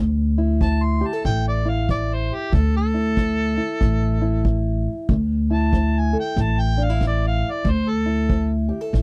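Swung eighths in four carry this soulful, smoky acoustic country blues excerpt, where a boxy, fingerpicked ladder-braced guitar and a woody, up-front pizzicato upright bass open on a Dmadd9 chord before a punchy kick drum played with brushes and a mellow, vintage jazz-style harmonica solo with light vibrato and scooped notes enter at 0.6 seconds, captured in a dry, close 1970s-style studio sound.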